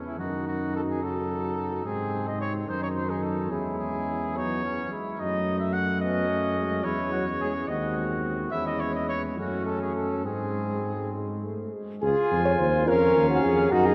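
Bathed in a long, wet cathedral reverb, this dark-toned recording of a brass quintet is a short fragment cut from a longer classical piece, triumphant and stately in mood. It moves in a rubato 6/8 at around 72 beats per minute in C# minor, tuned slightly low to A4 = 439 Hz. A trumpet carries the melody from 0.1 seconds, distant and roomy with a light vibrato, while a second, mellow, vintage-sounding trumpet plays a supporting line beneath it. A warm French horn and a trombone with a gentle vibrato fill out the accompaniment in the background, and an up-front tuba anchors the bass with a soft attack and its own vibrato. The harmony passes through diminished and dominant colours such as F#dim7 and G#7/D#, returning several times to C#m/E before settling on Db at 12.0 seconds as the opening material begins again.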